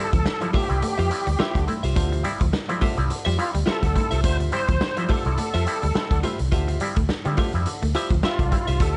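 A reedy, lightly overdriven tonewheel organ carries the melody through fast rotary speaker and chorus vibrato, its key click cutting through this hypnotic, driving funk groove in D minor at 105 BPM with a light 16th-note swing, all resting on a single Dm11 chord. Around it, a stringy auto-wah clav stabs through a combo amp, a compressed clean electric guitar adds accompaniment with subtle chorus, and a twangy guitar at the edge of break-up plays a riff in the background until 8.6 seconds. A round, foam-muted fingered bass and an up-front garage drum kit with a punchy kick and a medium-tuned snare in a stone room anchor this dry, short cut from a longer piece.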